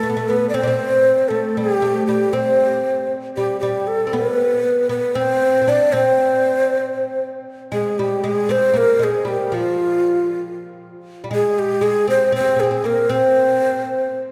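A breathy, mellow ney carries the melody from the start, its end-blown reed-cane tone close-miked and up front, shaded with vibrato and a crisp attack. Beneath it, a fretless oud plays a second line in a lower register, its plectrum-plucked double strings sounding bright and woody and also placed up front, though quieter than the ney. This passionate, stately piece of Turkish makam ensemble music moves in a straight 7/8 metre. At 7.7 s the music turns to a new section, and both instruments play through to 14.1 s. A lush church reverb with a long decay surrounds the pair, giving this short excerpt, cut from a longer piece, the resonance of a large church or concert hall.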